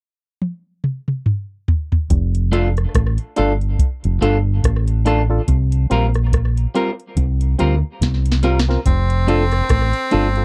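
A dry, close recording with a 1970s studio character opens this short, warm and uplifting cut from a longer roots reggae piece, moving at an unhurried 71 BPM in 4/4 with a light sixteenth-note swing. A soft vintage rhythm box starts at 0.4 seconds with a fill across kick, snare, rim click, hi-hat and toms, its deep kick, crisp snare and metallic hats sitting up front under a slapback echo. At 2.1 seconds a dark, round and punchy fingered dub bass arrives low and prominent, joined moments later by a bright, twangy clean electric guitar with tape echo and a hollow, percussive organ stab with a fast attack, a decaying tail and a chorused shimmer. The harmony settles on F6 before shifting to C7sus4, and a second drum fill leads back to F6. At 8.9 seconds an edgy tenor saxophone steps forward on a single note with light vibrato and its own tape echo, closing the passage with a present, pop-style solo voice.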